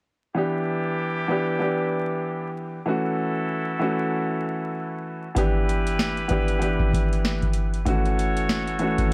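A woody upright piano and a muted trumpet section enter together at 0.3 seconds, opening this reflective, moody boom-bap hip-hop excerpt in E dorian at 96 BPM, with a swung 16th-note feel. The piano carries the accompaniment in an intimate, up-front voicing with audible action noise and long sustain, filtered at both ends so it sits in a soft, vintage band. Above it, the trumpets deliver tight, nasal stabs through straight mutes, bright with light vibrato and trailed by a delay. The harmony moves between Em7 and F#m7/E. At 5.4 seconds a booming analog drum machine arrives up front, its deep kick, crisp snare and metallic hats roughened by 12-bit sampler grit and re-recorded in a large room. Light reverb and a layer of vinyl crackle give the whole track a dusty, late-night character.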